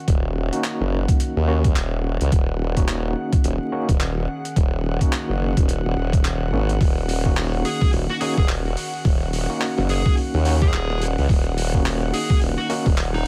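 Glitch hop with a funky, swaggering strut, this short excerpt sits on a single Ebm7 chord over a swung sixteenth-note groove, all under a layer of vinyl crackle in a largely dry sound. An up-front, thumpy electronic kick, pitched down and overdriven, anchors the beat alongside a gritty boom bap kit of handclaps, hi-hat and a high-tuned snare, both re-recorded in a large room. A wobbling formant-sweep bass with tube saturation and chorus sits prominently beneath, while a bright, barky tine electric piano punches in stabs through a combo amp, shimmering with fast tremolo, delay, 12-bit grit and sidechain pumping. Behind them, a warbly, nostalgic tape-like pad holds sustained chords with lo-fi sampler crunch, and an airy, breathy pad hovers on a single high note, both pumping with the sidechain. At 7.7 seconds a dark, smooth overdriven lead guitar enters with a picked melody trailed by delay.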